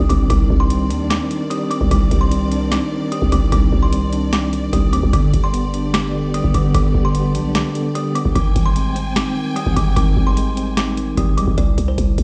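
An eerie, menacing half-time trap excerpt at 149 BPM in C harmonic minor opens with a booming, dry analog drum machine up front, its deep kick, tonal snare and metallic hats roughened by vintage 12-bit sampler grit, under a growling, buzzy 808-style bass. A woody, hollow kalimba carries the ringing melody through a low-pass filter and delay, while a clean tine electric piano with medium tremolo accompanies and a lush, bowed symphonic string section with a soft attack and vibrato sustains chords moving from Cmadd9 to G and Abmaj7. The strings drop out at 11.5 seconds and the electric piano at 11.6 seconds, leaving kalimba, bass and drums sounding through a bare stone room on a big sound system until 12.2 seconds.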